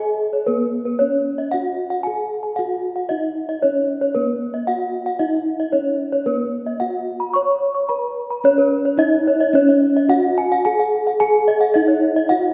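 Two bronze gamelan metallophones sound together from the start of this ceremonial, shimmering passage in Db slendro at 112 BPM, taken from a longer piece. One carries the melody in the middle register, struck with padded disc mallets for a mellow, soft ring, while the other plays arpeggios higher up with a wooden mallet and an airy, metallic tone; both sit up front, and their paired tuning produces shimmering beats. A lush concert-hall reverb surrounds them, and a new section arrives at 8.4 seconds before the parts end near 12.5 seconds.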